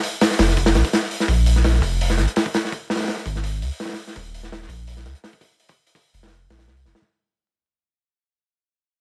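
A straight 4/4 breakbeat drives this dark, frenetic drum and bass and jungle excerpt at 167 BPM. Its crunchy acoustic kit of kick, snare and hi-hat sounds saturated and gritty, with a punchy kick, a medium-tuned snare, a small-room character and a rolled-off top. From 0.4 s a soft dub sub bass sits up front beside the drums, deep and round with a fast attack and sustained triangle and square wave tones ranging from Eb1 to Db2, while vinyl crackle and little reverb give the dry sound an aged surface as the passage fades out across its 7 seconds.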